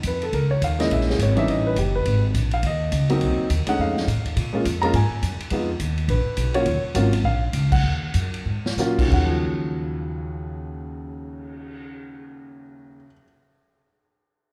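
Upright bass and a vintage drum kit with dark cymbals and a punchy kick open this cool, smoky, swinging jazz piano trio in Eb minor at 176-209 BPM, as a woody, up-front upright piano carries the melody over the pizzicato bass. The band slows from 6.7 seconds into a band accent and a drum fill at 8.5 seconds before the drums stop at 11.8 seconds, all in a large studio reverb heard from further back in the room, cut from a longer piece.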